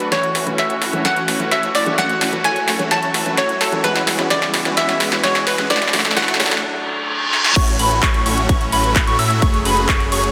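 Bathed in a moderate, lush hall reverb, this excerpt of anthemic, uplifting festival progressive house moves at 129 BPM in A major, cycling through A6, F#madd9, E and D. A hollow, bouncy square pluck carries the melody over a dark, boxy baby grand piano with audible action noise, while a rich chamber string section and huge, phased supersaw chords sit in the background, both pumping with the sidechain as a filter sweep opens the supersaws across the build-up. Underneath, a thick, saturated detuned saw bass stays very quiet, and a punchy big-room dance kit with metallic hats, handclaps and cymbals drives a drum fill through the build. The pluck and piano stop at 6.6 s for a short break filled by a quiet riser and reverse cymbal. At 7.6 s the drop lands with a punchy, up-front electronic kick and a catchy, dark plucky unison lead playing arpeggios between B5 and E6, echoed by tape delay.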